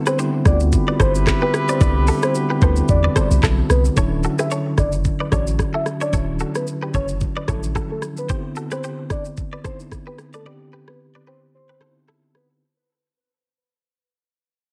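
A punchy sub bass with a deep, pitch-dropping attack anchors this sunny, romantic afrobeats excerpt at 111 BPM. Its sine tone sits under the groove from 0.5 to 7.8 seconds. An up-front electronic drum kit of knocking kick, crisp hi-hat, handclaps, rim click and shaker drives a lightly swung sixteenth-note feel in 4/4, while a mellow tine electric piano, heard through built-in speakers, carries the chords from Cmaj9 to Dmaj9 and back. A bright, twangy clean electric guitar recorded direct plays a picked riff bathed in spring reverb and tape echo, and a round, warbling synth lead layered with a sub octave sings the melody with chorus, vibrato and tape echo. Near the start, a smooth-topped pop horn section with light vibrato adds a brief second line. The mix has a heavily compressed, radio-like sound with light reverb, and it fades out from 4.0 seconds onward.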